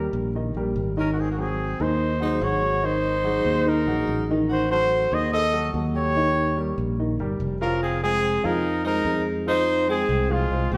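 A straight 4/4 jazz groove, sophisticated and danceable, carries a warm, smooth-topped trumpet melody up front with vibrato and scooped notes, over a raspy, growling tenor saxophone second line, an intimate grand piano with audible action noise and deep bass, and a direct fingered electric bass, heard as a band playing live in a stone room with wet reverb, in a passage cut from a longer piece.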